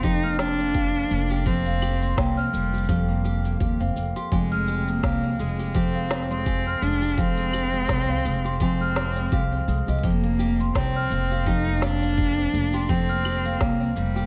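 Lightly reverberant and tape-tinged, this folktronica piece, cut from a longer work, feels autumnal and delicate, with a gentle swung lilt. A rich, bowed cello carries the melody up front with focused vibrato, while a large celesta rings out a sweet, bell-like second line through tape echo, a bright, full-bodied nylon-string guitar fingerpicks arpeggios with audible finger squeak, and a woody pizzicato upright bass holds the low end. A compressed, muffled, pitched-down electronic kick thumps until 13.8 s alongside an organic electronic kit of woody snare, crisp hi-hat, cabasa and claves.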